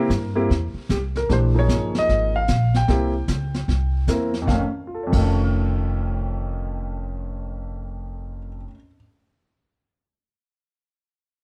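Smoky and moody, this short jazz piano trio passage swings at 151 BPM in 4/4. An intimate concert grand carries the melody with deep bass and audible action noise, bathed in plate reverb. A woody, growly pizzicato upright bass sits up front, and a vintage brush kit with a high-tuned snare, punchy kick and rolled-off top drops out at 5.2 s as the harmony moves from C7 and Bbm7 to F7b13 in a dark production.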